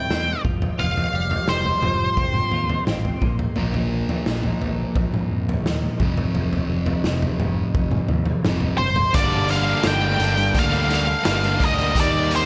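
A dark, fuzzed octave lead guitar sits up front over a twangy, phased twelve-string electric guitar's arpeggios, a bright picked bass and a punchy, up-front garage drum kit in this angsty, brooding quiet-loud alternative rock excerpt at 86 BPM in G minor, where a sludgy overdriven guitar riff takes over from the twelve-string at 3.6 seconds and the lead returns at 8.8 seconds before two more distorted guitars, one of them double-tracked, and a very quiet vintage string-machine viola pad join at 9.1 seconds.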